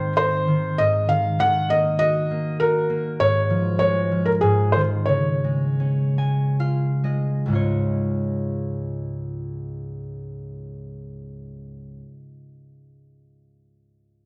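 In a rubato 3/4 that drifts between 63 and 101 BPM, this sleepy, tender children's lullaby in Db major, tuned to A4 = 438 Hz and cut from a longer piece, sets a soft, felt-muted upright piano melody, mellow and intimate up front, over a ringing, fingerpicked concert harp accompaniment; it slows from 3.2 seconds, the harp adds a fill from 5.8 seconds, and the harp carries on alone after the piano stops at 6.5 seconds, inside a dark production with moderate recital hall reverb.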